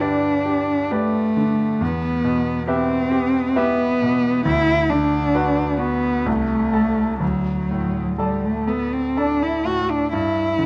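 Heard through close, detailed microphones in a moderately reverberant recital hall, this lyrical romantic classical passage from a longer work unfolds in a flexible, rubato three-four, with a dark, expressive bowed cello singing the melody up front with vibrato and portamento while a bright, brilliant concert grand piano with deep bass accompanies through G, Em, Bm/D, Am/C and D before settling on G5 at 10.1 seconds.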